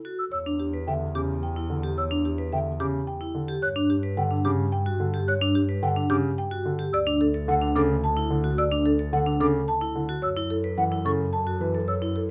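Closely miked and nearly dry, this short cut from a longer minimalist classical piece in 3/4 feels urgent and hypnotic as it cycles through Em7, Gmaj7(no3), D and F#m7. A metallic, up-front vibraphone struck with hard mallets and a mellow, airy flute with vibrato spin arpeggios alongside a woody rosewood marimba carrying the melody, while a bowed double bass adds rich, expressive bass lines with portamento. From 0.9 seconds a polished concert grand piano, deep and short in sustain, fills in the accompaniment.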